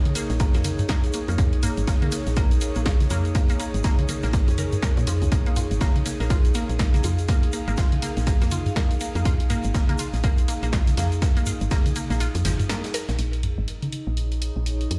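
The recording sounds as if it were played on a big sound system in a bare room, with a large studio reverb. This hypnotic, quirky minimal techno piece runs at 122 BPM in 4/4 and Bb minor, with a 59% swing on the sixteenths. An up-front, tape-warm analog kick and a soft, round, woody FM bass, saturated through tubes and pumping with the sidechain, anchor the groove. Around them, a punchy analog drum machine supplies hi-hat and snare, and electronic toms ring through a dub echo. A natural big-band kit with ride cymbal and snare sits in the background, filtered and with pumping cymbals, alongside a grainy tube shaker. A squelchy, resonant square-and-saw blip pluck carries the riff through phaser, analog chorus and tape echo. Above it floats a breathy, detuned pad with ring modulation and a noise layer, slow to rise and long to fade. The kick stops at 11.8 seconds, the band hits an accent at 12.7 seconds, and a new section begins at 13.2 seconds before this excerpt of a longer piece ends.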